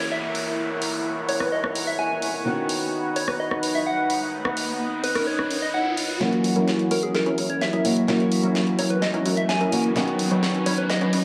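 Festival progressive house at 128 BPM in 4/4, this uplifting, euphoric excerpt is cut from a longer piece and tuned slightly below standard pitch. A round, keys-like FM lead carries the melody from G#4 to G#5, coloured by chorus, cassette tape saturation and dub echo, while a dark, boxy fingerpicked parlour acoustic guitar and a lush, thick detuned unison pad with chorus hold the harmony over F#7 and Badd9 chords. A big-room electronic drum kit enters at 0.3 seconds with hi-hat, rim click and a huge layered snare, its low end trimmed by high-pass filtering, and background downlifter and riser effects sweep under the mix, with a riser building from 2.8 to 6.2 seconds. At 6.2 seconds a build-up begins with a drum fill, and a punchy, full-bodied supersaw stab joins on the riff, its low-pass filter sweeping alongside a filter sweep on the pad. The whole sits in a huge ambient reverb with a 4.2-second tail and a touch of small-room ambience.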